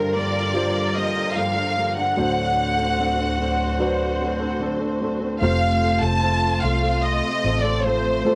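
A lush, up-front violin section with a cassette-tape tint sings the melody over natural-sounding baby grand piano, distant string chords with vibrato and portamento, and boxy, thumb-plucked flamenco guitar arpeggios with finger squeak in the background, a melancholic, heartbroken pop ballad at 74 BPM moving through Gm7 and D7 to F, where a dark, round, foam-muted electric bass enters at 5.4 seconds, all set in light reverb with the homemade feel of a cassette recording.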